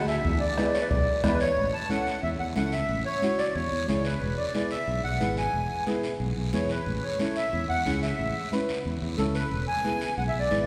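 A reedy, sweet accordion carries the melody up front in this festive, joyful cumbia, its light tremolo tuning giving each note a gentle shimmer. Beneath it, a dark, woody upright piano fills in the accompaniment with long sustain, while a fingered electric bass sits up front with a warm, amped tone. Congas with a thick, damped skin stay close and dry in the background, joined by a raspy guiro, and a soft-beaten bombo sounds distantly only until about 1.4 seconds. Near the opening, a breathy clarinet slips in briefly from 0.7 to 1.5 seconds with a whispered, intimate subtone, scooped notes and vibrato. The harmony moves between A and E chords, and the whole ensemble sits in a church reverb, giving this short excerpt, cut from a longer piece, a spacious, resonant glow.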